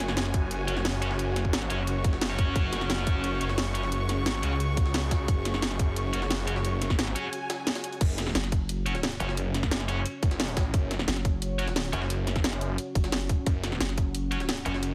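Heavily compressed and dry, with a dense radio-style punch, this cut from a longer dark technical drum and bass piece feels futuristic and aggressive. An overdriven electronic kick and a layered kit with a cracking snare and bright hats sit up front, while a very quiet, gritty jungle-style sampled kit with a high-tuned snare and tape-warm character adds a distant second layer. Beneath them a snarling, growling saw bass, detuned and distorted, drives the low end with sidechain pumping, and a deep, warbling ambient pad with chorus and its own reverb holds sustained chords in the background. A rich, lush symphonic string section with vibrato adds bowed texture until 8.0 s, and scooped, high-gain electric guitar stabs cut through with distortion and delay. After a short break, a nasal, resonant vowel-sweep wobble bass with chorus joins at 8.4 s, giving the second drop a wobbling, formant-filtered edge.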